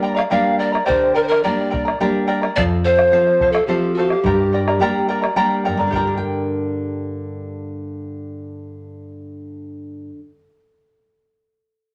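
A wet studio reverb surrounds this short, melancholic and earthy Andean folk piece in G minor, moving at 107 BPM in a straight 3/4 over a Gm, F, Gm progression. An airy, wooden, polished pan flute carries the melody with vibrato, a crisp chiffy attack, rolled-off highs and an unsteady tone until 5.3 seconds, while a deep, dark bombo sits close and dry beneath it until 6.2 seconds. Up front throughout, a shimmering charango with double and some octave-doubled strings and a full-bodied nylon-string guitar with audible finger squeak are both fingerpicked, carrying on alone after the flute and drum drop out.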